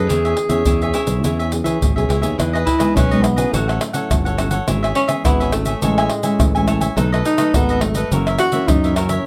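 A clear, classical-style clarinet opens this festive, playful samba and choro excerpt in E major at 105 BPM, sounding G#4 for its first 1.8 seconds over crisp picked cavaquinho, a warm thumb-plucked nylon-string guitar in the background and a punchy, growly fingered electric bass. Close, dry percussion of egg shaker, tight surdo, pandeiro and tamborim sits up front. At 2.7 seconds a mellow, close-miked tenor saxophone takes a jazz-style solo with vibrato, soft attacks and scooped notes, moving through Emaj7, A6, Amaj7, B7 and F#7 in a moderate studio reverb.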